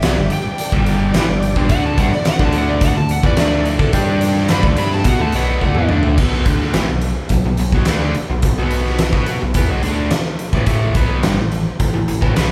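A straight 4/4 groove at 107 BPM drives this gritty, brooding classic rock passage in B minor, built on an up-front big drum kit with a punchy kick and fat snare ringing in a bright stone room, a round, deep dub bass, and a double-tracked, picked electric guitar riff that runs the full 12.5 seconds. Over chords moving between G5 and Dadd9, a dark, overdriven slide guitar played with fingerpicks takes a solo until 5.9 seconds, backed by very quiet, boxy archtop acoustic picking and a thick, gritty tonewheel organ with key click and slow rotary swirl, both dropping out at 6.2 seconds after a drum fill. The band then settles onto Bm and A5, captured as if playing live together in one room with light reverb.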